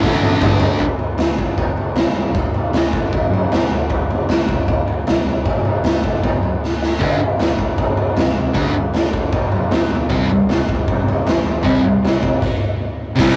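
A drum fill opens this swaggering, raw garage rock excerpt at 155 BPM alongside a brief mellow combo-organ chord with light vibrato, after which the gritty, punchy drum kit and a quiet, round fuzz bass drive on until the thick, double-tracked fuzz guitar riff returns up front at 7.0 seconds, with a stop at 12.4 seconds, all captured in a rough rehearsal-room sound with light reverb and saturation.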